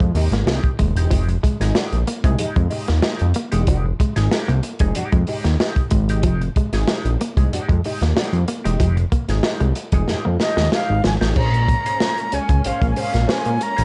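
A straight 4/4 funk groove at 94 BPM drives this hypnotic F minor passage, cut from a longer piece, with a crunchy breakbeat drum kit up front: a tight kick, a medium-tuned snare, hi-hat and dark crash cymbals, all saturated and gritty, and a drum fill leading into the change of chord. A fat, thick analog bass carries the low end, its detuned sawtooth tone sustained with a fast attack and a filter sweep. An electric guitar at the edge of break-up plays picked, compressed accompaniment through a wah, while a clean, hollow-bodied semi-hollow guitar sits in the background with a fingered riff bathed in spring reverb until 11.2 s. A breathy, reedy concert flute enters at 10.4 s with a crisp, close-miked melody and vibrato. As the harmony moves from Fm9 to Bbm9 at 11.4 s, a lush, distant studio string section adds bowed, sustained chords in the background. The production is dark and dry, with a rolled-off top.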